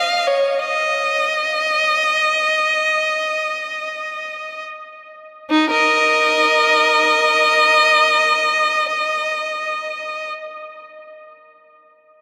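Meditative and yearning, this short classical passage for unaccompanied violin unfolds in free time, moving with an expressive, unhurried freedom. A single bowed violin carries the whole piece, its tone rich and smooth with vibrato and an even, smooth top end. Sitting up front in the mix, the instrument ranges from Eb4 to F5 and plays throughout the 10.3 seconds. The tempo slows through the opening section, up to about 5.5 seconds, before a second section follows until 9.5 seconds. A long cathedral reverb places the player in a vast, echoing space, so each phrase lingers and blooms in the air around it, as befits a fragment cut from a longer work.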